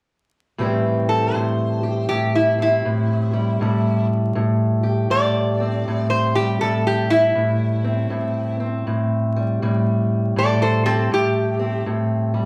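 A swung 4/4 carries this mournful, soulful acoustic country blues, with a fingerpicked steel-string parlour guitar entering at 0.6 seconds to lay down a dark, boxy accompaniment over a lingering Am7. At 1.1 seconds a metal-body resonator slide guitar, played with fingerpicks, takes the melody up front in a bright, metallic, nasal voice that sits alongside the equally forward accompaniment. The duo sounds as if playing live together in one large studio, bathed in a generous reverb and dusted with vinyl crackle, and the piece is cut from a longer performance.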